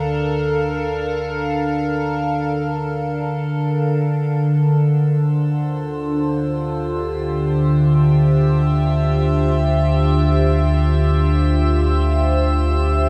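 An evolving wavetable pad sits up front with morphing, phaser-tinged sustained chords from Bbmaj7/D to Dm11 in this serene, spacious free-time ambient excerpt in D minor, tuned to A4 = 442 Hz, over a round, deep analog bass holding D2, while a glassy, drifting glass-harmonics texture enters in the background at 5.0 seconds and fades in through a vast, echoing cathedral space.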